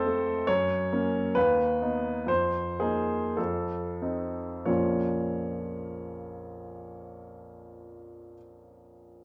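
A clear baby grand piano opens this brief excerpt from a romantic character piece, playing alone in Bb minor with a brooding, passionate mood. The tempo moves freely between 43 and 72 BPM in 2/4, with rubato phrasing, and the opening section slows down over its first 4.7 seconds. Harmonies pass through Gb, B/D#, F7sus4 and F7 before settling on Bbm at 4.7 seconds, where a new section begins and carries on to the close at 9.2 seconds. The piano sits up front with a polished, present tone and long sustain, reaching from Bb1 up to A5. A moderate large-studio reverb surrounds it, and the overall production leans dark.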